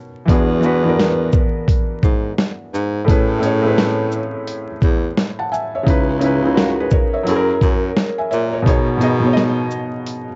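Worn, warbling cassette tape with vinyl crackle and drifting pitch colours this short lo-fi hip hop clip, its highs dulled and set in a moderate studio ambience. A felt-muted upright piano, soft and intimate with audible action noise and short sustain, carries the chords from E7 through Amaj9, C#m7 and F#9 to B69, while a baritone saxophone plays the low bass line in a jazz style, with light vibrato, scooped notes and a smooth top. A gritty, compressed sampler-style soul kit with a thumpy kick, medium-tuned snare, hi-hat and shaker swings the sixteenths beneath, lending the whole a nostalgic, melancholic feel.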